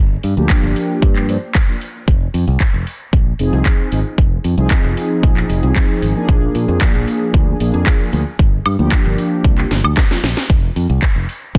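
A dense, heavily limited modern master with digital ambience frames this cosmic, groovy nu-disco excerpt, where a punchy, up-front electronic kick and a tape-tinged house kit of cracking snare, metallic hats, handclaps and woodblock drive a straight 4/4 groove. A bright, direct fingered electric bass pumps with sidechain, while mellow, detuned sawtooth synth brass with chorus, vibrato, a filter sweep and tape echo sustains a round, full-bodied tone over Gm7, Fm7 and Bb7. A drum fill arrives at 9.7 seconds, the brass stops at 10.2 seconds, and the chords drop out at 10.5 seconds as bass, kick and house kit carry on, the kit stopping just before bass and kick reach the end.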